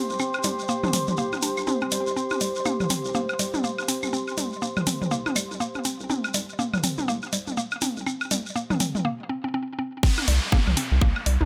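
Sparse and cool, this 122 BPM minimal techno passage cut from a longer piece swings its 16ths as a warbling, nostalgic lo-fi pad, chorused and pumping, floats up front with a woody, round, delayed synth pluck riff over a rubbery, hollow square bass in the background, grainy shekere, delayed electronic woodblock and toms and a dry analog hi-hat, until a break at 9.0 s gives way at 10.0 s to a drop where a tight, layered kick and a downlifter arrive.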